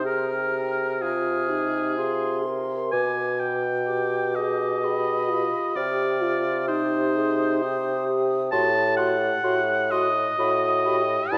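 From the first moment, a wind quintet opens this slow, elegiac movement in C minor at 64 BPM in a rubato 3/4, with an airy, tongued flute carrying the high melody with vibrato while a clear, up-front oboe sings a second line just above the rest of the ensemble. Beneath them, a dark, smooth clarinet and a distant, roomy French horn sit in the background as accompaniment, and a mellow, vintage-toned bassoon with light vibrato anchors the bass near the front. The yearning harmony moves from Abmaj13/C through G/B and Cm to F#dim/A by 8.5 seconds, all within a moderate scoring-stage reverb and a dark, warm production in this excerpt cut from a longer piece.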